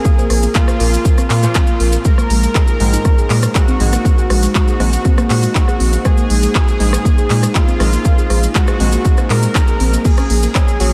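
Melodic techno with a melancholic, dramatic mood, cut from a longer piece: a punchy, up-front electronic kick drives it alongside a deep round analog bass that pumps under sidechain, while a tape-warm techno drum kit adds smooth hi-hats, handclaps, rim clicks and crash, and close, grainy maracas sit beneath. A smooth, evolving, detuned soft supersaw carries the melody through analog delay, a gentle soft round pluck spins arpeggios with chorus and delay in the background, and a moody, slow-attack dark analog pad holds sustained chords shimmering with chorus and phaser. Very quiet, nasal synth brass stabs enter at 0.8 s as the harmony moves from Bbsus2 to Abadd9/Bb and on to Gb/Bb at 10.1 s, all set in a light digital reverb.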